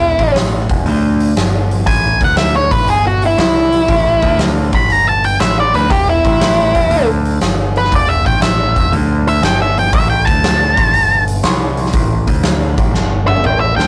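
Blues rock power trio with a southern rock edge, this raunchy, gritty excerpt swings at 119 BPM as a dark, octave-fuzz lead guitar solos up front over a growling, bright, overdriven picked bass and a punchy big-room acoustic drum kit entering at 0.2 seconds, moving through Em11, A5, Em7 and Gsus24 in a rough rehearsal-room sound with light reverb and saturation before a drum fill at 12.9 seconds.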